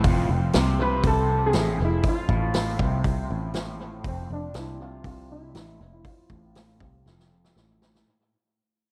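A buzzing, shimmering sitar carries the melody from 0.8 seconds, its sympathetic strings ringing through delay in this trippy, mysterious psychedelic rock excerpt at 120 BPM in 4/4. Beneath it, a double-tracked fuzz guitar plays a riff on F5 through phaser and delay, and a dark, round picked electric bass sits up front. A gritty vintage drum kit with a punchy kick keeps a straight feel before a drum fill at 7.1 seconds, while a very quiet combo organ with light vibrato holds sustained chords, all within an echo-heavy mix that carries a filter sweep and a fade-out throughout.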